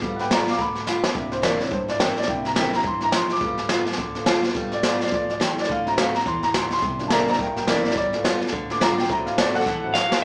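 Upbeat, rollicking rockabilly at a swung 212 BPM, cut from a longer piece, with a slightly detuned, woody upright piano taking a solo over a G7, C7 and D7 progression, its action noise audible and its notes ringing long. A jumbo steel-string acoustic guitar is picked bright and full-bodied with finger squeak, a very quiet gut-string upright bass thumps darkly underneath, and an up-front brushed drum kit with a boomy kick adds fills at 0.9 and 9.7 seconds. A twangy, slightly broken-up electric guitar with a warbly pitch drift slips in at 9.9 seconds, all in a live-room sound with moderate studio reverb and a small-speaker character.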